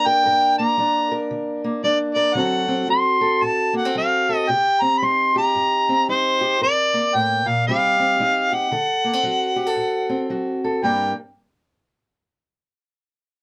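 Close, detailed microphones and light reverb frame this smoky, soulful acoustic country blues fragment in G minor at 114 BPM with a swung 4/4 feel, as a mellow, vintage-toned harmonica carries a jazz-style lead up front with light vibrato, a soft attack and scooped notes over a dark, boxy, parlour-style fingerpicked steel-string acoustic guitar cycling through Gm, D7 and Cm, both playing from 0.0 to 11.1 seconds.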